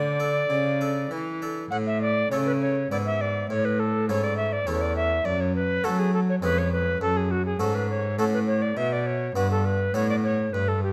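A moderate recital-hall reverb surrounds this brief cut from a longer baroque-style sonata movement, a dance-like, flowing piece in A major and 3/4 at 102 BPM, tuned to A4 = 436 Hz. Up front, a pure, mellow alto recorder with soft attacks and expressive vibrato carries the melody. Beneath it, a close-miked, dry, round harpsichord supplies the continuo accompaniment and a gut-string cello with a rich, slightly nasal period tone holds the bass, as the harmony moves from A through F#m and settles on Bm at 8.8 seconds.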